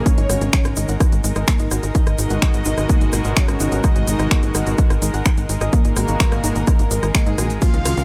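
A digital ambience surrounds this dramatic, hypnotic melodic techno excerpt at 127 BPM in 4/4, where an overdriven, heavy electronic kick sits up front with a tight, punchy sequencer bass, joined by a layered techno kit of finger snaps, smooth hi-hat, ride cymbal and rim click, while the bass and the melodic parts pulse with sidechain pumping over an Abm7 chord. In the background, a fat, detuned analog lead carries the melody with subtle chorus and digital delay, shadowed by a distant, lush symphonic violin section on a second line, while a sul tasto chamber string section holds sustained chords. A soft, round pluck spins dark arpeggios, a brassy analog pad with vintage 12-bit grit fires stabs until 6.5 seconds, a grainy egg shaker ticks close and dry, and from 2.2 seconds a tense, bowed-like drone hovers barely audible beneath it all.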